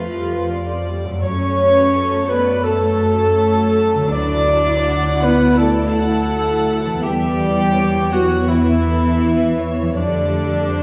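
Heard from further back in a recital hall with a wet reverb, this short cinematic orchestral excerpt feels hopeful and tender, moving with a rubato feel as a floating, sul tasto studio violin section carries the melody over pure, soft-attack symphonic violins, a mellow cor anglais and a very quiet clarinet on second lines. Beneath them, a dark, lush viola section accompanies with vibrato while a clear French horn section holds sustained chords in the background, and a ringing, fingerpicked concert harp spins arpeggios. Distant cellos and a woody double bass section anchor the bass as the harmony moves from Fadd9 through F#m, Dadd9 and Emadd9 before returning to Fadd9 at 10.0 seconds.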